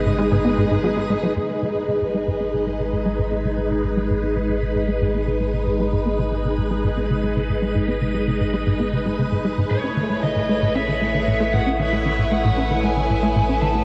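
A straight, driving 4/4 pulse from a tight, punchy, dark sequencer bass with a detuned filter pluck and 12-bit sampler grit carries this mysterious, cosmic stretch of sequencer-driven space music, over a round sine sub bass and swirling, bright string-machine chords under ensemble chorus and phaser, while a sparkling granular shimmer fades in from 1.4 s in the background and an overdriven, lo-fi lead guitar with delay enters at 9.7 s as the harmony shifts from G#m to A, all bathed in a huge ambient reverb and the warbling pitch drift of worn cassette tape.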